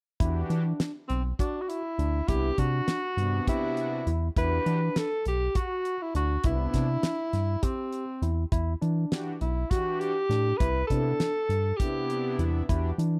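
Set in 7/8 at 202 BPM counted in eighths, this progressive instrumental band piece in E minor has a straight, driving pulse and a tense mood. A damped 70s drum kit sits up front with a fat snare, tight kick and hi-hat, its top end rolled off. A round, deep analog bass with a fast attack and a dark sawtooth-and-sine tone anchors the low end. A barky tine electric piano plays bright, clean arpeggios through a combo amp, while a brassy, detuned analog pad with chorus and warbling vibrato fills out the harmony as the chords alternate between Em9 and Cmaj9. From 1.1 seconds a breathy tenor saxophone carries the jazz-style melody prominently in the mix, with light vibrato and a slapback echo, all within the dry, close sound of a small 1970s-style studio room in this section cut from a longer piece.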